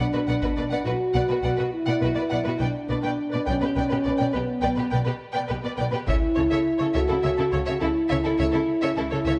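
Set in a moderate scoring-stage reverb, this epic, dramatic fragment of a cinematic orchestral score rolls in a slow, straight 12/8, with a mellow, up-front French horn section holding soft-attacked sustained chords over a lush foundation of smooth cellos and focused double basses. Above them, a clear, intense violin section carries the melody from a distance while a second, richer violin section adds a supporting line and dark, woody violas murmur in the background. A close taiko ensemble struck with hard sticks punctuates the texture, first at 0.4 seconds and again from 6.1 to 7.2 seconds.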